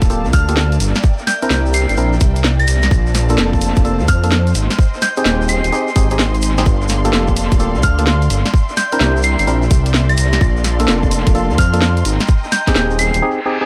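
A bouncy, skippy two-step garage groove at 128 BPM opens with a tight, up-front electronic kick, a cracking snare and hi-hats from the garage kit, a grainy tube shaker in the background, a deep, rumbling detuned saw bass, and hollow, percussive organ stabs with chorus and dub echo. A lush symphonic violin section pumps with sidechain on sustained Gm9, C9, Bbmaj7 and Abmaj7 chords, while a soft, warbling FM synth bell with chorus and dub echo joins at 0.3 seconds. This echo-heavy cut from a longer piece sits in light digital ambience and ends with a brief reverse cymbal at 13.4 seconds.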